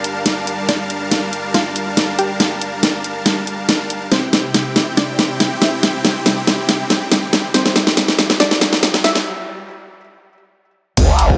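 Heavy and aggressive, this half-time wobble dubstep build-up, cut from a longer piece, sets a lush unison pluck with digital delay and a filter sweep in the background against sustained, detuned supersaw chords pumping with sidechain over Gm7 and C, while an up-front, layered electronic drum kit with a huge snare plays a fill until a break at 9.3 seconds, a very quiet riser and sub drop enter at 5.9 seconds, and at 11.0 seconds a punchy electronic kick and a saturated, growling, wobbling bass with chorus and overdrive land the impact.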